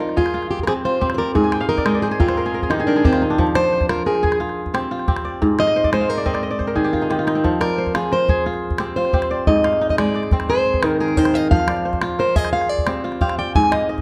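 Reflective and hypnotic, this West African string and xylophone piece moves at 118 BPM in a straight 12/8 in F dorian, swaying between F minor and A-flat chords over a short passage cut from a longer piece. A full-bodied, fingerpicked steel-string acoustic guitar carries the melody as a solo up front, while a ringing, crisp kora spins arpeggios alongside it and adds fills at 1.4 and 5.6 seconds. A small, close and dry calabash keeps the percussion, with a brief drum fill at 6.6 seconds, all set in a moderate recital-hall reverb with a dark production.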